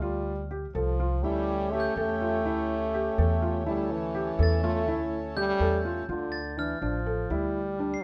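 A clear, up-front French horn carries a classical-style second line over soft, felt-muted upright piano arpeggios and a woody, thumpy pizzicato upright bass, opening this restless, hypnotic fragment of contemporary chamber music in 5/8 at 247 eighth-note beats per minute. At 1.2 seconds a reedy, breathing pedal harmonium adds dark sustained chords as the harmony moves from F5 to A7/D, and a metallic, bell-like glockenspiel struck with brass mallets rings in high above from 1.8 seconds with a band-limited, vintage edge. At 6.1 seconds the harmonium drops out and the music shifts to Dm and then G5/D, all caught with close, detailed microphones and light reverb.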